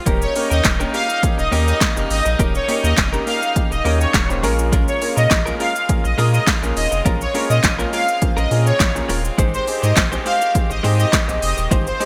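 A straight 4/4 deep house drum kit with a punchy kick, handclaps, shaker and gated reverb drives this bittersweet dance-pop cut, where a round sub bass and a clear baby grand piano pump with sidechain, a soft detuned supersaw carries the phased melody, a clean direct-recorded electric guitar riff sits in the background with lush chorus, and a muted, nasal French horn section holds sustained chords over Eb7, Bbm7 and Abmaj7 in a bright 1980s-style digital production.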